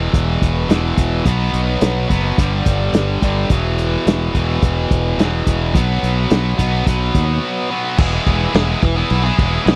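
A dry, close 1970s-style studio sound frames this sunny, driving classic rock excerpt at 107 BPM in straight 4/4, where a tight, bright, double-tracked distorted guitar riff sits up front over power chords moving from E5 through B5 and G5, a growling overdriven fingered electric bass runs low beneath it, and a muffled, lo-fi vintage drum kit with dark cymbals and a tight kick joins at 0.1 seconds, with a break arriving at 7.4 seconds before a new section lands on E at 8.0 seconds.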